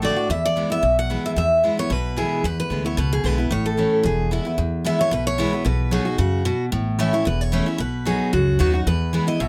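A driving bluegrass groove in 4/4 at 224 BPM, with a light swing on the eighths, carries this rustic excerpt from E mixolydian into E major at 4.6 seconds. Two picked dreadnought guitars sit up front, bright and full-bodied with fresh strings and audible finger squeak, one carrying the melody in the upper register while the other plays accompaniment lower down. Beneath them a woody, thumpy pizzicato upright bass holds the low end, all captured with close, detailed microphones and light reverb.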